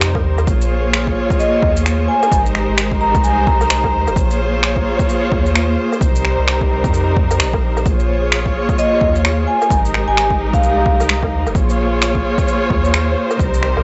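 Future garage at 130 BPM in Bb dorian, this nocturnal, rainy excerpt from a longer piece moves in 4/4 with a 60% swing on the sixteenths, circling through Bbm7, Abmaj7 and Cm7. A barely audible flickering, grainy texture opens the recording and fades by 0.5 s, while a bowed string ensemble sustains chords from the very start, its vibrato-laden tone focused and smooth on top, sitting up front and pumping against the sidechain. Beneath it, a soft, round dub sub bass holds the low end with a fast attack, also breathing with the sidechain pumping. Punchy, overdriven electronic kick drum and layered finger snaps, shaker and woodblock drive the groove, the percussion pushed up front with studio reverb around the drums. A close-miked vibraphone played with medium mallets, motor off, rings out metallic melodic phrases between Eb5 and Bb5 from 1.4 s and again from 8.8 s, trailed by analog delay. 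The overall sound is dry and gritty, with transformer saturation and a dulled top end that suits the late-night mood.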